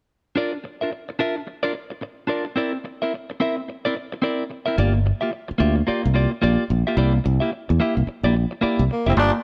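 This cool, driving funk cut, taken from a longer piece, moves in 4/4 with a 16th-note swing feel. A clean, compressed electric guitar opens alone at 0.4 seconds, picking its accompaniment up front over a Dm to C9 to Gm7 to C9 progression. A modern fingered electric bass joins at 4.8 seconds, its bright, direct, punchy tone sitting low and forward in the mix. Just as the passage closes, a growling tenor saxophone steps in at 8.9 seconds with a raspy, breathy solo line touched by light vibrato. A twangy, nasal clav played through a combo amp adds brief stabs in the background at the very end. Light reverb gives the parts a little space.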